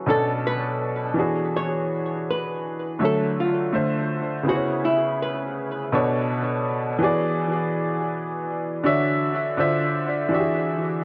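Hip hop with a nostalgic, hazy mood and a swung 4/4 feel, this short cut from a longer piece sets a bright, woody upright piano, slightly detuned with audible action noise and long sustain, up front as accompaniment through cassette tape, low-pass filtering and tape echo over jazzy seventh chords, while a clean, picked hollow-body jazz guitar carries the melody until 5.8 seconds through its own low-pass filter and tape echo, all in an echo-heavy mix with moderate spring reverb.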